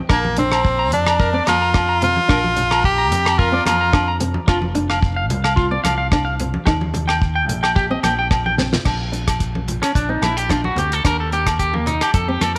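Bathed in moderate echo-chamber reverb and small-room ambience, this carefree, danceable highlife excerpt, cut from a longer piece, swings gently in 4/4 as an edgy, forceful tenor saxophone with vibrato and scooped notes leads until 4.2 s over twangy, slightly broken-up electric guitar arpeggios with tape echo, a dark, fingerpicked nylon-string guitar with finger squeak in the background, a fingered electric bass, and a dry 70s drum kit with fat snare and bright cymbals whose fill at 8.4 s ushers in a clean electric guitar solo at 8.9 s, while ringing agogo bells and thin-skinned, low-tuned congas sit further back.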